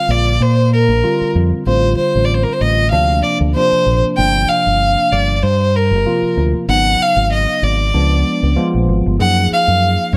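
Bathed in light reverb, this funky, soaring jazz fragment in Bb major swings at 96 BPM as a rich, smooth bowed violin with vibrato carries the melody up front, a bright, clean tine electric piano with analog chorus supplies the accompaniment, and a round, punchy fingered electric bass, dark and amped, enters at 0.1 s, while the harmony moves from Bb69 through Gm7 and Db7b9 to Gbmaj7.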